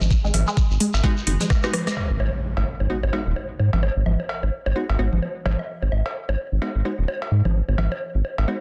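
A cool, hypnotic slice of minimal techno, cut from a longer piece, rides on a round, deep analog bass that pumps against the sidechain, alongside congas, cowbell, woodblock and bongos steeped in dub echo and a grainy shekere that drops out at 2.0 seconds. Up front, a knocking electronic kick and a garage kit with metallic hats and a rim click fill the opening bars with a short drum fill. They fall away together with a squelchy, resonant blip pluck with phaser and chorus, while crisp wavetable chord stabs, entering at 1.0 seconds, echo on over a background impact. The master is dense and heavily limited, with little reverb.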